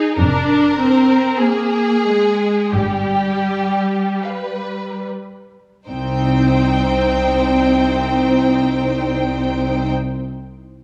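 Classical orchestral music, a slow romantic movement for strings, elegiac and solemn in mood and shaped with a flexible rubato that slows through the opening 5.9 seconds. A rich viola section sits up front with a smooth top to its accompaniment, while a second violin line carries a lush, expressive vibrato. Cellos and double basses join at 0.2 seconds: the cellos clear and even, the basses bowed with vibrato beneath them. The melody violins enter at 1.4 seconds high above the ensemble, sounding distant and steady. The harmony moves from Fm through G7 to settle on Cm as the passage turns to new material. A moderate scoring-stage reverb and small-room ambience blend the sections in this fragment of a longer piece.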